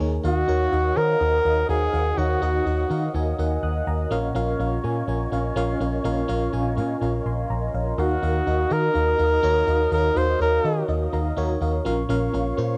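A tremolo FM electric piano with a phaser and cassette-tape grain opens this glossy, romantic pop passage at 124 BPM, alongside a round, foam-muted, dark electric bass up front and soft, airy flute-ensemble chords drifting behind. A clear flugelhorn with vibrato carries the melody from 0.3 to 3.1 seconds and again from 8.0 seconds, while the harmony moves between Ebmadd9 and Bbm. The electric piano adds a fill at 10.9 seconds, and the whole section, taken from a longer piece, has the intimate feel of a small booth captured at home on cassette.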